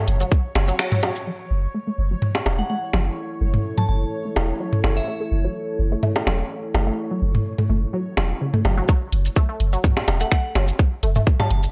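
Minimal techno at 126 BPM in F# minor, with a light 16th-note swing and a cool, hypnotic mood, heard here as a short cut from a longer piece. A squelchy, resonant blip pluck carries the riff from the start, treated with phaser, analog chorus and analog delay, while a bubbling stepped-filter texture with random filter steps sits high above it until 8.9 s, and a punchy sine sub bass with a pitch-drop attack anchors the low end throughout. An overdriven, tight electronic kick and a garage kit of finger snaps, hi-hat and shaker mark the opening drop, with a band accent at 0.8 s, then drop out until returning together at 8.9 s, while tape-warm electronic bongos and toms stay up front nearly the whole way. In the middle stretch, over an F# minor chord, a moody, warbling ambient pad and a crystalline FM bell with chorus and delay enter at 2.6 s as a filter sweep runs across the synth arpeggio sound. 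The pluck, texture, pad and sub bass all pump against the kick, and the whole recording has a dry, gritty hardware character.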